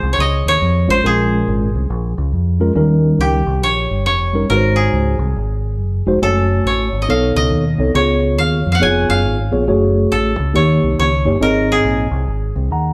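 Swung eighths at 139 BPM in 4/4 drive this soulful, hopeful uptempo gospel excerpt in Db major, where a bright, woody koto played with fingerpicks carries the melody up front over a dark, round and punchy fingered electric bass, joined at 0.9 s by a mellow, clean tine electric piano comping through rich seventh and ninth chords, all captured as a band playing live in one room with moderate large-studio reverb.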